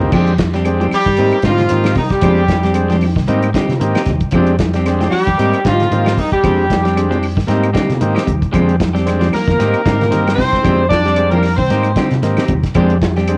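Funky and driving, this afrobeat excerpt at 114 BPM in F dorian swings its sixteenths in a small-room home recording on cassette. A soul drum kit with dark cymbals and a tight kick, background congas and faint woody claves, and a round fingered electric bass carry the groove beneath a reedy combo organ, a twangy, slightly broken-up guitar playing arpeggios with vibrato, and clean picked guitar stabs, while from 0.9 s a brilliant, punchy horn section leads the melody up front, with a vintage trumpet adding a second line until about 12.1 s, over an alternating Fm69 and Abmaj7 vamp.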